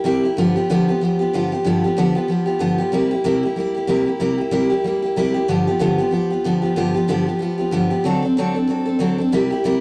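Rowdy and rollicking, this short rock fragment, cut from a longer piece, rides a brisk 188 BPM in 4/4 with a swung eighth-note feel. A lone picked steel-string acoustic guitar, a dreadnought strung with fresh strings, carries the whole 9.8 seconds, ranging from G2 up to A4 in G mixolydian and tuned to A4 = 438 Hz. Its tone is bright and full-bodied, sitting up front with audible finger squeak. The harmony moves through G7, C7, back to G7 and then D7, giving a bluesy, barroom drive. A light reverb and the rough rehearsal-room sound keep it loose and immediate.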